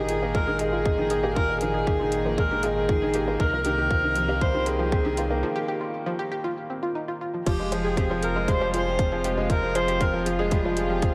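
A lush hall reverb gives this short piece of piano-and-strings electronica a spacious, cinematic sheen, while its mood stays intimate. A dark, distant-sounding solo viola carries the melody up front, bowed with a soft attack and trailed by tape echo. Beside it, a woody upright piano plays a riff. Further back, a pure, floating studio string section holds sustained chords, and a detuned sawtooth pluck with chorus, tape echo and a noise layer spins bright arpeggios. Beneath them, a round, mellow analog bass anchors the low end, and the strings, pluck and bass all breathe with sidechain pumping. A layered deep house kit with overdriven, metallic hats and crash cymbal enters at 0.1 seconds, joined at 0.3 seconds by a tight, tape-warm electronic kick up front, as the passage builds toward a break at 5.4 seconds and drops at 7.5 seconds.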